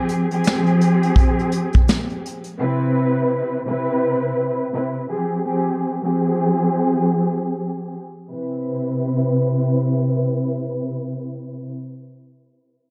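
A lush bowed string section with soft-attack vibrato opens this soulful, warm boom-bap hip-hop fragment in C major at 84 BPM, its tone given a cassette-tape grain and a filter sweep through 8.3 seconds. A vintage brush drum kit with a punchy kick, medium-tuned snare, hi-hat and a rolled-off top sits up front with a swung 16th feel, but only until 2.6 seconds. The strings then carry on alone over Fmadd9 and Cmaj7 chords in a dark, small-room mix with light reverb, playing until 11.7 seconds.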